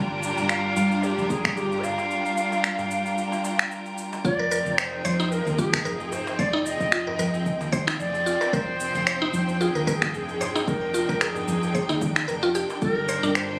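A swung sixteenth-note feel at 112 BPM in 4/4 drives this organic downtempo excerpt in F dorian, with up-front, overdriven electronic cabasa and finger snaps entering at 0.2 seconds. A deep, overdriven electronic kick joins at 1.3 seconds alongside a crisp metal-shell darbuka that sits close and dry in the background. The hypnotic, meditative mood rests on sustained chords from a clear, focused bowed string section and a dark, round fretless bass, both pumping from sidechain as the harmony moves from Gm7 to Fm7 and back to Gm7. A bright, reedy cedar flute in the Native American style carries the melody with vibrato and a tongued chiff, trailed by digital delay, and from 4.2 seconds a woody, percussive FM synth pluck adds arpeggios with chorus and delay. High in the background, a glassy sine texture of drifting overtones holds a calm, sustained tone through chorus and its own reverb, while the whole recording carries compression, light studio reverb and room ambience, as if captured on a phone.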